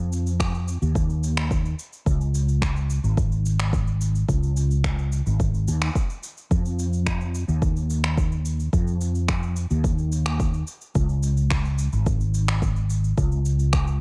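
A dry, close-sounding mix carries this relaxed sunset chillout excerpt at 108 BPM in straight 4/4, where a dark, round fretless electric bass with ensemble chorus sits up front from the start, ranging from Ab1 to F2, while layered electronic cabasa and finger snaps join at 0.1 seconds and a deep, up-front electronic kick enters at 0.4 seconds, both drum parts overdriven and re-recorded in a large room.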